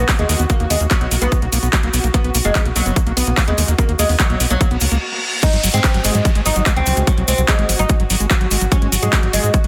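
A tight, overdriven electronic kick drives this hypnotic psychedelic trance excerpt at 146 BPM in straight 4/4, layered with a drum and bass kit of bright hats, handclaps and crash cymbal, while a grainy cabasa sits in the background. A deep, round analog bass holds the low end up front beneath a squelchy, screaming acid riff with distortion, chorus and digital delay, as a woody, plectrum-plucked oud carries the melody through phaser and dub echo and a detuned, pulsing gated texture sustains chords behind, with the acid line, oud and texture all carrying sidechain pumping. The harmony moves from B5 to F#sus2, and a reverse cymbal and downlifter enter at 4.7 s ahead of the drop at 5.4 s, all under a dense, heavily limited master with light reverb.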